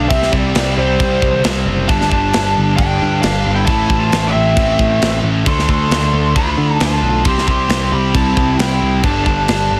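A dark, lo-fi lead guitar through a small cranked amp carries the melody over a biting second lead and three picked rhythm guitars (one sludgy, one bright and double-tracked, one scooped, high-gain and very quiet) that churn out a heavy riff in this menacing hard rock fragment at 134 BPM. A bright, direct picked bass sits up front alongside a tight metal drum kit of kick, snare and crash, the kit arriving at 0.1 s with a mid-forward, rolled-off top. Plate reverb glazes both overdriven leads while the whole mix is dense and heavily limited, moving through C5, G5, Am, Dm and C chords.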